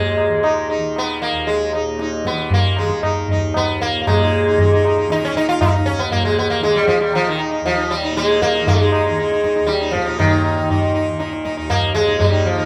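Devotional and radiant, this Hindustani classical excerpt in a straight three-beat metre gathers pace throughout, its music shifting into a new section at 4.1 seconds. Up front, a plectrum-plucked sitar carries the melody with a buzzing, shimmering tone ringing with sympathetic strings, while a mellow, softly plucked tanpura hums a low buzzing drone beneath it. A low-tuned, ringing tabla, compressed and saturated, joins at 0.2 seconds, and the ensemble sounds as if playing live together in one room under light reverb.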